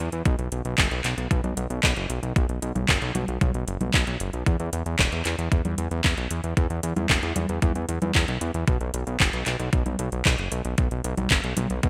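A fat, detuned sawtooth bass with digital delay and a filter sweep opens this nostalgic, bittersweet italo disco excerpt in straight 4/4, joined at 0.1 s by an overdriven house kit of congas, handclaps and metallic hi-hat treated with gated reverb, and at 0.3 s by a thumpy, up-front electronic kick, set in a bright 1980s-style digital production with light reverb.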